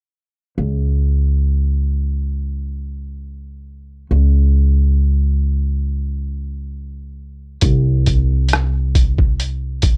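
In a straight, unhurried 4/4, this smooth, late-night R&B and neo-soul excerpt opens at 0.6 s on a woody, pizzicato upright bass sitting up front, joined at 7.6 s by a gritty, compressed, pitched-down boom bap sampler-style kit whose thumpy kick, hi-hat and rim click sound tape-warm and re-recorded in a small room, all captured in a dry, close 1970s-style studio sound.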